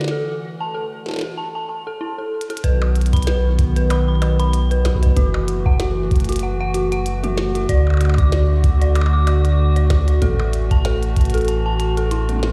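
A hollow, flute-like pad with sampler grit and an eerie, warbling FM bell arpeggio open this wistful IDM excerpt at 95 BPM with a light 16th-note swing, over a glitchy kit of clicky hats, a tiny snare, blips and toms, with a faint, bright gated texture pulsing for the first 1.4 seconds. After a short drum fill, a round sine sub bass and a deep, overdriven analog kick arrive at 2.6 seconds, carrying the chords through A5, B, F#m7 and D. The bell is smeared with chorus, phaser and digital delay, the kit is treated with tape echo, and a large studio reverb gives the whole piece the air of a big, bare room.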